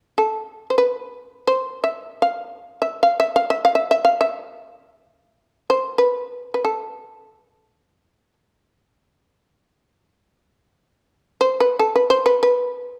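A lone shamisen, plectrum-plucked and up front, carries this short fragment of Japanese traditional chamber music, entering at 0.2 seconds and playing through to 13.0 seconds. Its acoustic tone is percussive with a buzzing edge, and the fretless neck shapes a line that stays between A4 and F5 in the A hirajoshi scale. The music moves in free time, giving it a solitary, still mood, and the pace slows from 7.8 seconds to the close. A moderate recital hall reverb surrounds the instrument, and the production leans dark. The piece is cut from a longer work.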